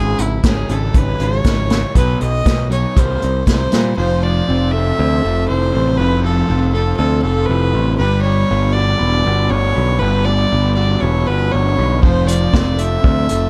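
Upbeat and jangly, this indie rock excerpt at 119 BPM sets a clear, nasal bowed fiddle melody with light vibrato and analog delay over two warm, overdriven picked electric guitars (one very quiet), a bright, growly, up-front picked bass and a roomy acoustic drum kit played with bundle sticks that drops out at 3.8 seconds and returns at 12.0 seconds, all in a dark production with light reverb moving from C#m/G# through Fmaj7 and Gmaj7.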